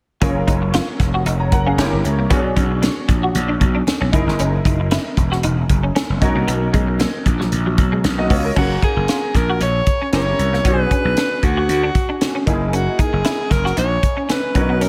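Polished and bright in a studio reverb, this upbeat, breezy excerpt of 1980s jazz-funk pop rides a swung groove from a tight funk drum kit with gated reverb and a growly, overdriven slap bass up front, while a brilliant baby grand piano and a twangy clean electric guitar riff, both with ensemble chorus, move through lush chords like F#maj9 and Bm6, barely audible ringing congas drop out at 8.4 seconds, and an edgy alto saxophone with light vibrato and subtone takes the melody from 8.6 seconds.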